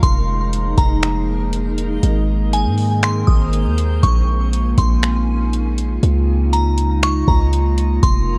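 Atmospheric cloud-rap hip hop in a half-time feel, ethereal and melancholic, cut from a longer piece and coloured by worn, warbling cassette tape with little reverb. A booming analog drum machine with a deep kick, metallic hats and finger snaps sits up front beside a boomy, sine-based 808-style bass. A dark, nostalgic square-wave pad pumps under sidechain, with chorus and its own reverb, through chords from Fm11 to Db69, while a glassy FM synth bell carries the melody with chorus and delay, a reversed granular texture swells dreamily beneath, and a very quiet downlifter and swell mark 0.0 and 8.2 seconds.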